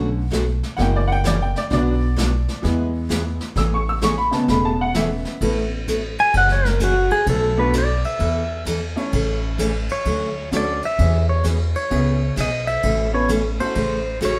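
Cheerful, down-home western swing country, cut from a longer piece, with a swung lilt played by a band sharing one room in a moderate studio reverb. A clear, slightly detuned upright piano takes the opening solo over bright, full-bodied picked acoustic guitar, woody and thumpy pizzicato upright bass, and a distant, roomy brush kit with dark cymbals and a boomy kick. At 6.2 seconds a twangy, compressed pedal steel guitar enters up front with slide and volume swells to carry the melody through to the end.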